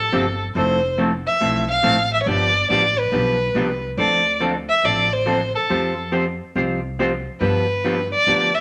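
Western swing country at 140 BPM in a swinging 4/4 with a down-home mood, this short excerpt puts a dark, smooth bowed violin with vibrato up front on the melody, an up-front clean, picked hollow-body jazz guitar in accompaniment, and a thumpy, woody pizzicato upright bass underneath, all moving through G7sus4, Fmaj7, G7, Dm7 and Fsus2 in a studio reverb.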